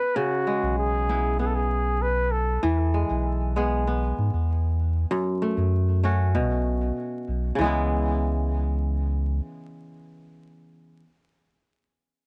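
Bright, ringing fingerpicked kora arpeggios with digital delay carry this intimate, autumnal folktronica fragment. A mellow flugelhorn with light vibrato sings a brief classical-style solo line through delay until 2.6 seconds, while a deep, round sine sub bass with tube saturation enters at 0.6 seconds and holds sustained notes up front until 9.4 seconds, all set in light reverb with a bed of vinyl crackle.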